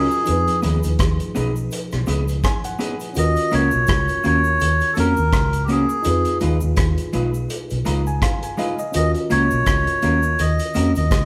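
A reedy, breathy melodica carries the melody up front in this bittersweet, longing lovers rock reggae passage, cut from a longer piece and set at 83 BPM in Eb minor with a swung sixteenth feel over a slow move between Fm7b5 and Ebm7. Beneath it, a worn, slightly out-of-tune tine electric piano accompanies and adds fills at 2.1 and 7.5 seconds, while a dark, slightly broken-up electric guitar through a small old amp plays compressed stabs and a round, foam-muted fingered bass sits forward in the mix. A vintage kit with a punchy kick, rolled-off top and pumping room sound drives the hi-hat, kick and rim clicks, with a faint cabasa in the background, as the band plays live in one room bathed in stone-room reverb.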